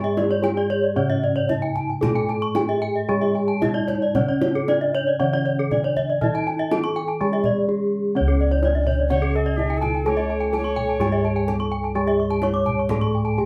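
Brilliant and ceremonial, this Balinese gamelan excerpt in C# pelog moves at 113-127 BPM in a straight 4/4, captured as a band playing live in one small, reverberant room. A bronze metallophone struck with a wooden mallet carries the melody with shimmering paired-tuning beats, while a darker, smooth metallophone plays accompaniment and two bright metallophones spin arpeggios above, one sitting forward and the other close and dry. Round, dark bossed gongs anchor the bass, a distant kendang played with soft hands adds a fill around 7.6 s, and a pure alto recorder with vibrato sings a brief second line from 9.1 to 11.6 s.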